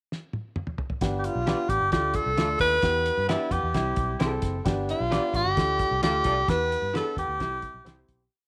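Warm and uplifting, this short 1960s-style soul piece opens with a fill on a cloth-damped, thuddy drum kit, whose fat snare on all four beats and tight kick drive the groove up front. A dark, woody upright piano comps in close-voiced quarter-note chords with grace notes, a round, foam-muted fingered bass lays down a melodic, syncopated line with chromatic approach notes, and a breathy, close-miked tenor saxophone carries the motif-based melody with vibrato and subtone. In the background, a slightly broken-up electric guitar with analog chorus chops on the backbeat, and from 3.3 seconds a clean hollow-body jazz guitar adds short fills in sixths, all in a small room with light reverb before the fade-out begins at 6.5 seconds.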